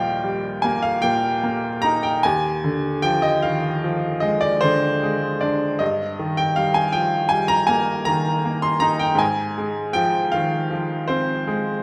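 Nostalgic and serene, this short excerpt from a longer romantic nocturne in 9/8 with rubato features a solo upright piano, brilliant and woody with audible action noise and long sustain, sitting up front and intimate within a wet recital hall reverb as it moves from Eb through Ddim/Eb and Eb/G to Fm/Ab across its 11.8 seconds.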